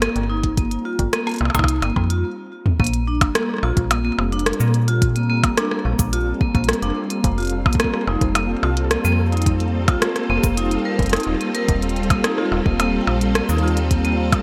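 This short cut from a longer IDM piece opens with a soft string machine holding silky, slow-blooming chords under an ensemble chorus, while a bright vibraphone played with medium hard mallets ripples through arpeggios, its fast motor vibrato and digital delay giving it a ringing shimmer. Up front, a metallic FM bass with a fast attack and decaying notes sits low, and a glitchy drum kit of clicky hats, cabasa, rim clicks, toms and percussion blips runs through gated reverb, joined at 0.4 seconds by a deep electronic kick. At a straight 108 BPM in 4/4, the mood is playful yet wistful, moving from a C7(no3) chord to Bbmaj7sus2 and later Ebadd9. A brief stop from 2.2 to 2.8 seconds, punctuated by a drum fill, leads into the longer second section. A lush hall reverb and a bright 1980s-style digital sheen frame the whole track.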